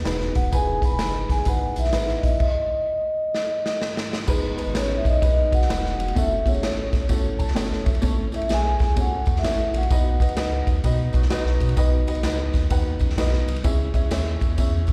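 An uptempo, uplifting 1960s-style soul excerpt at 128 BPM with a swung feel opens on a woody, boxy upright piano with slapback echo over a rubbery, nasal square-wave bass, as a punchy, up-front big-band drum kit with dark cymbals and a distant, jingly tambourine join, two soft-mallet vibraphones carry a ringing melody and a quieter background line from 0.4 s, the band halts for a stop and a drum fill before the piano adds its own fill, and a mellow horn section with octave doubling appears briefly at 11.1 s, all heard as a live gig through the venue's PA in hall reverb.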